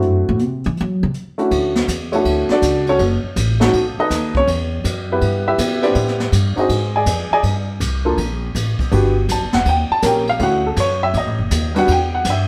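An intimate upright piano with audible action noise, a slightly detuned character and short sustain sits up front, carrying the melody through a plate reverb in this sophisticated, swinging jazz piano trio cut from a longer piece. The tempo is a brisk 162 BPM in 4/4 with a firm swing on the eighth notes, centred in D major. A pizzicato upright bass with steel strings and a woody tone also sits close, taking a short solo spot for the opening 1.5 seconds before the piano takes over the solo for the rest of the passage. Further back, a jazz brush kit with dark cymbals, a medium-tuned snare, a boomy kick and a rolled-off top sounds distant and roomy, using hi-hat, kick, ride and snare. The harmony moves from D7 to Dmaj7, then through chords such as F#m, B7, Am7, Gmadd9 and Eb7 before settling back on Dmaj7, B7 and Em. The whole trio is heard from further back in a moderately reverberant studio room, giving the performance a warm, live-in-the-room feel.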